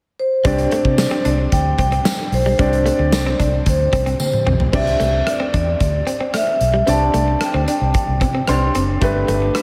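A straight 4/4 pulse at 112 BPM drives this romantic, glossy 1980s-style pop passage in C major, anchored by a punchy, dark big rock kit and a round, foam-muted fingered bass up front, with a drum fill at 4.2 seconds. Above them a ringing, metallic vibraphone carries the melody through tape echo, while a warm baby grand with long sustain and chorus plays the accompaniment and adds its own fill at 8.2 seconds, and a bright, clean direct-recorded guitar riff with chorus and echo sits in the background. A distant, jingly tambourine joins briefly from 1.0 seconds, and the dreamy mix is soaked in lush hall reverb, moving from Csus2 to Gadd9.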